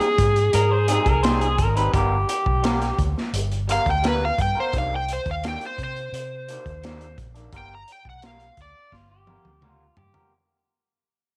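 Straight-eighth soul blues with a soulful, brooding mood, cut from a longer piece, where an overdriven slide guitar played with fingerpicks carries the melody up front over compressed, lo-fi stabs from a slightly broken-up electric guitar, a second twangy picked guitar line that appears briefly and returns at 8.9 s, a round, foam-muted vintage bass, and a crunchy breakbeat kit with a punchy kick, dark rolled-off top and a drum fill closing it out, all through light small-room reverb as the whole passage fades out.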